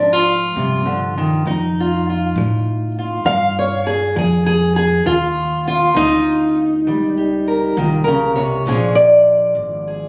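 Captured on a phone in the room and dressed with moderate studio reverb and compression, this short, soulful and swaggering cut of acoustic country blues in Bb mixolydian rolls along at 67 BPM in 12/8, with a boxy, up-front fingerpicked parlour steel-string guitar carrying the melody over a woody pizzicato upright bass on steel strings as the changes move from a rootless Bb7 through F7 and Eb7 back to Bb7.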